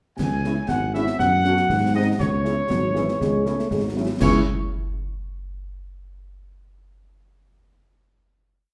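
This brief, complete military-style march for wind band opens at 0.2 s in C# minor at 120 BPM in a straight 2/4, with a resolute, martial mood. A clear trumpet section carries the melody up front with light vibrato. Beneath it, a mellow, close-miked tuba plays bass on the beats and in sustained notes, while the concert snare drum, clash cymbals and concert bass drum set a marching snare over a bass drum on the beat, topped by bright cymbals. A French horn section, distant and roomy in a classical style, fills in with after-beat and sustained chords. At 2.7 s a solo euphonium with light vibrato enters as a second line, answering at phrase ends. The harmony moves from C# minor through F# minor and G#7 back to C# minor, and the ensemble settles on a final chord at 4.2 s, all set in a wet, large studio reverb.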